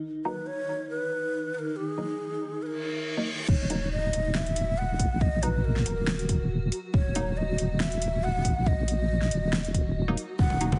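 A blurred, granular cloud pad opens this cavernous, meditative deep dubstep excerpt in Eb phrygian at 139 BPM with a half-time, lightly swung feel, soon joined by an up-front, breathy low ney melody carrying dub echo and by muted, phaser-tinged dub chord stabs run through cassette tape and echo. A reverse cymbal at 2.8 seconds leads into the drop at 3.5 seconds, where a dark, detuned wobble bass with tube saturation sits at the front alongside a deep, tape-warm electronic kick and a layered drum kit with a fat snare, metallic hats and crash. Ringing, hard-hand congas appear at the very end, and the whole mix has a heavily compressed, radio-like tone with vinyl crackle, light reverb and dulled highs.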